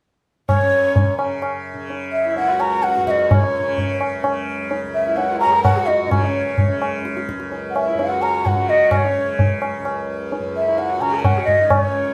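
Introspective and meditative, this short excerpt of Hindustani classical music in raga Bageshri on C# moves at 128 BPM in 3/4, with a breathy, tongued bamboo bansuri carrying the melody up front with vibrato, a bright, buzzing tanpura drone shimmering beneath, a high-tuned, close and dry tabla ringing short, and a rich, nasal bowed sarangi gliding through a distant second line, all played live together in one room with a wet studio ambience.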